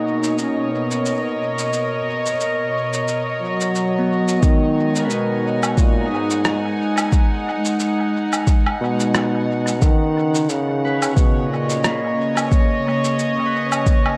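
A dark, spacious mix, steeped in moderate spring reverb, frames this deep ambient dub passage, cut from a longer piece, at 89 BPM in 4/4 with a swung sixteenth feel in G# minor. A bucket-muted trombone carries the solo melody with a veiled, punchy tone, vibrato and scooped notes, sent through dub echo. A studio string section holds soft-attack sul tasto chords that float up front with a smooth top. Behind them, a fingerpicked Celtic harp rings out arpeggios through tape echo, with a filter sweep over its opening bars, while a very quiet, breathy, wind-like tuned noise layer hovers until 4.4 seconds. Sampler-style shaker, woodblock and rim click, pitched down and muffled, play with dub echo from 0.2 seconds, and at 4.4 seconds an overdriven, layered electronic kick drum enters up front as the harmony moves from Bmaj9 to G#m7 and back to Bmaj9, with the trombone ending before the strings and harp.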